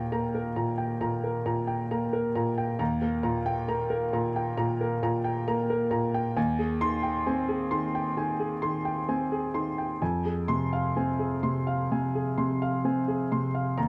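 Set in light reverb, this 13.9-second fragment of hopeful, tender neoclassical minimalist piano features a solo grand piano with a boxy, intimate, up-front tone and audible action noise, moving with loose rubato across a broad span from low bass to high treble as it drifts through Eb, Abmaj7/Eb and Fm.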